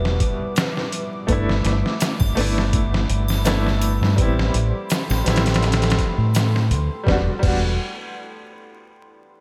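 A round, punchy dub bass sits up front in this smoky, dark trip hop excerpt, joined by a gritty, pitched-down sampler drum kit with a thumpy kick and gated reverb, a woody upright piano with audible action noise, tremolo and tape echo, a deep, detuned ambient pad in the background, a breathy sine lead heard only in the first 1.3 seconds, and a close, dry egg shaker and triangle, all under lush hall reverb and vinyl crackle as the chords move from Em9 through G6 to Am9.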